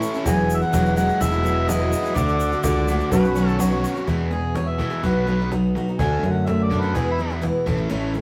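An open-road, jangly slice of folk rock and heartland rock at 125 BPM in E major, this excerpt opens with a full-bodied dreadnought acoustic guitar, its picking carrying audible finger squeak, beside a double-tracked overdriven electric guitar riff and an up-front, growly fingered electric bass. Underneath sit a soft, flute-like tonewheel organ with key click and slow rotary speaker, a very quiet reedy electric piano with fast tremolo, and a grainy egg shaker, all of which drop away around 4 seconds. At 0.3 seconds a snappy cajon with snares comes in from the background, struck with hard hands, while a mellow vintage harmonica takes the melody with scooped notes. From 4.1 seconds the harmonica moves into a pop-style solo over chords moving through E, B, D and A. The rough rehearsal-room recording places everything in a moderate stone room, where the bright guitars ring out.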